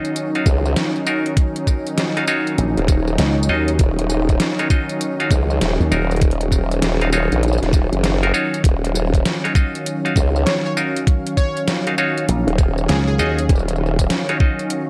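A swung 4/4 glitch hop groove with a swaggering, gritty mood is driven by a knocking electronic kick and a dubstep kit of deep snare, metallic hats, rim click and tambourine, under a chorused, overdriven formant-sweep wobble bass and a growly, punchy slap bass with an envelope filter that plays from 2.6 to 5.9 seconds and again at 12.3 seconds, while a twangy, nasal clav stabs through analog delay over a smooth, warbling analog pad holding an Ebm9 chord, and a detuned plucky unison lead adds a catchy line from 10.5 seconds, all in a dry cassette-tape recording cut from a longer piece.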